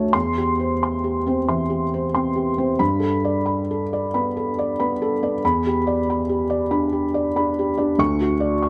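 Hopeful and peaceful, this short cut from a longer piece is neoclassical minimalist piano at a slow 46 BPM in dotted quarters, moving in 6/8 with a rubato feel. A single felt-muted upright piano plays solo throughout the 8.7 seconds, reaching from D2 up to C#6. Thick felt gives the instrument a dark, intimate tone, and the soft clatter of its action is clearly audible as it sits up front in the sound. The harmony drifts from C/E through Gadd9 and Em7 before settling on Dmaj7 at 8.0 seconds. A light reverb adds a little space around the close, mellow playing, and the piano is tuned slightly below standard pitch, at A4 = 439 Hz.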